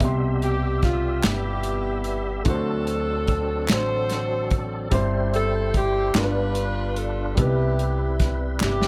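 Jubilant and soulful, this slow gospel excerpt in C major rolls along at 49 BPM with a straight 6/8 feel, set in a small room. An up-front acoustic drum kit with a tight kick, a medium-tuned snare, hi-hat and a rolled-off top anchors the groove, alongside a woody pizzicato upright bass strung with steel, while a warm grand piano with short sustain fills in the accompaniment. A full tonewheel organ holds sustained chords, lightly overdriven with audible key click, chorus vibrato and a slow rotary speaker. At 0.4 s a tight, up-front saxophone section takes the melody with a dark tone, soft attack, light vibrato and tape echo, and crisp, close group handclaps join at 1.2 s. The harmony moves from Cmaj7 through D7, C/G and G7 before returning to Cmaj7, and a drum fill arrives at 8.6 s.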